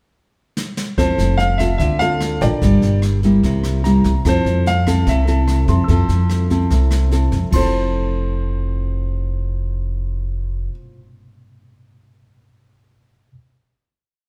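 A straight bossa nova groove in 4/4 starts with a brief brush fill on the drum kit at 0.6 seconds, then settles into a breezy, romantic brush pattern with dark cymbals, rim clicks and a boomy kick, while the upright bass plays woody, dotted root-and-fifth lines up front. A nylon-string guitar plucks classical-toned thumb bass and syncopated chords beneath an intimate grand piano singing short song-like motifs, its action noise audible. A bright, barky tine electric piano scatters notes in the background and lingers past the final chord that begins at 10.8 seconds, all set in moderate studio reverb and heard from further back in the room.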